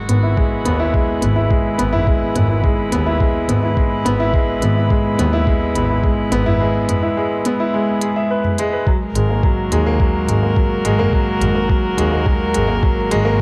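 Piano and strings electronica at 106 BPM in 4/4, hypnotic and intimate, built on a warm baby grand piano riff with delay sitting up front over a dark, reedy string quartet holding sustained chords with sidechain pumping, as the harmony moves from E/G# to G#sus2 at 8.9 seconds. A focused, bowed chamber double bass section with vibrato carries the low end, also pumping with the sidechain, while an electronic drum kit adds crisp hats and toms and a muffled, thumpy sampler-style kick drives the pulse. The production is dark with light reverb and small room ambience, and the excerpt is cut from a longer piece.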